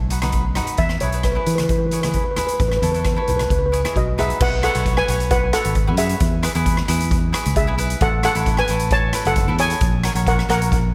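A shimmering, metallic steel pan carries the melody up front with a touch of delay, entering at 0.8 seconds over a bouncy, carefree calypso groove in E major at 133 BPM. Crisp, bright picked cavaquinho and a warm fingered electric bass support it, while an airy, up-front street-band drum kit with a boomy kick, dark cymbals, hi-hat and rim clicks drives the straight 4/4 feel. Very quiet, low-tuned congas add close, dry color until 4.3 seconds, and light reverb rounds out this short cut from a longer piece.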